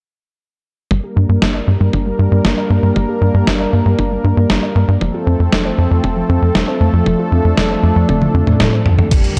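Italo disco at 117 BPM in G minor, bittersweet and nostalgic, this excerpt moves from Gm to F over a smooth, detuned sawtooth pad with chorus holding sustained chords up front, while a warbling, lo-fi pluck with chorus and digital delay plays arpeggios in the background. A tight, punchy sequencer bass with tube saturation drives alongside a thumpy electronic kick, and from 1.4 s a gritty, sampler-style soul kit of hi-hat, medium-tuned snare, crash cymbal and toms joins, both drum parts re-recorded in a large room. A drum fill runs from 8.1 s to 9.1 s, and the mix sits in a lush hall reverb with a dark production.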